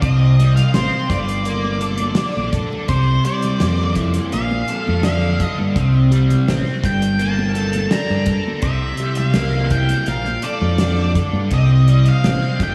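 A dark, mysterious psychedelic rock passage at 84 BPM opens with a biting, double-tracked overdriven guitar riff run through a rotary speaker, a growling fingered bass with overdrive pushed up front, a damped 70s drum kit with a tight kick and a dry snare, and an octave-fuzz lead guitar whose murky, distorted melody trails tape echo. Soft-handed, high-tuned congas slip in very quietly at 0.6 seconds, and a short drum fill lands at 2.2 seconds as the chords move from C minor through Gm add9, C7 and Bbmaj7. A lush hall reverb bathes the mix in a dreamy haze over a studio ambience.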